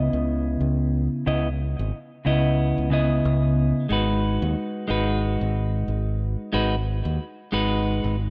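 A clean, picked electric guitar with a bright, twangy tone and a fingered electric bass enter together at the start of this relaxed sunset chillout excerpt in C# minor, moving at 91 BPM in 4/4 with a lightly swung 16th-note feel. The up-front guitar accompaniment runs through a low-pass filter with tape echo and a filter sweep, while the direct, warm bass holds a low register beneath it. A lush hall reverb surrounds the pair as the harmony moves from C#m9 to G#m7 at 3.9 seconds.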